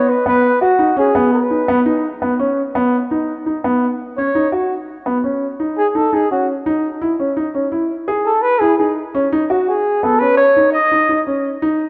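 A mellow flugelhorn with a soft attack, vibrato and slapback echo carries a jazz-style melody over natural, up-front grand piano arpeggios, opening on a rootless G#m/B chord in this tense, intricate progressive instrumental cut from a longer piece at 169 BPM in 7/4. From 4.2 seconds the roomy flugelhorn takes a solo, and at 6.7 seconds the harmony moves to Emaj7 and then drops away at 9.1 seconds, before the horn stops at 11.2 seconds and the piano at 11.8. A lush hall reverb surrounds the rough home demo mix, whose top end is dull and rolled off.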